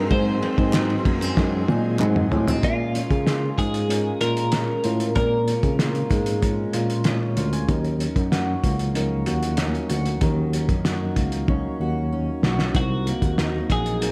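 Indie pop with a bedroom-pop haze, this wistful clip, cut from a longer piece, moves at an easy straight pulse through minor-seventh chords and a half-diminished turn near the end. A bright, twangy twelve-string electric guitar carries the melody through lush chorus and slapback echo, dropping out at 6.4 seconds and returning at 12.8 seconds. Beneath it, a fingerpicked steel-string acoustic guitar with fresh strings and a full-bodied jumbo tone plays throughout, treated with chorus and vibrato, while soft, round synth keys resembling an electric piano sit in the background with a cassette-tape tint. The bass line comes from a barky tine electric piano pushed through a combo amp with fast tremolo, placed up front beside a cloth-damped, thuddy drum kit whose muffled, saturated sound has dark cymbals, a fat snare and a tight kick. An ethereal, airy pad holds sustained chords only in the opening 2.6 seconds, where a crisp group handclap also briefly joins, and drum fills mark the close of that opening and the lead-up to the final chord. 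The mix is dry and intimate, with little reverb on the room.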